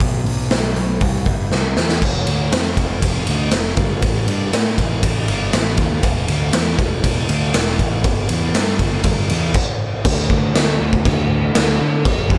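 A straight 4/4 pulse at 120 BPM drives this cathartic, bittersweet slice of quiet-loud alternative rock, cut from a longer piece. A raw garage drum kit sits up front, its punchy kick, medium-tuned snare, hi-hat, ride and crash sounding in a bright stone room that pumps and saturates the hits into a gritty roar. Beneath it, a picked electric bass covers the low end from E1 to D3, heard direct and amped through overdrive for a round, fuzzy growl. A drum fill from 1.5 to 2.0 seconds launches the music into a longer passage, and a fresh section arrives at 10.1 seconds. Both parts play throughout under a light reverb.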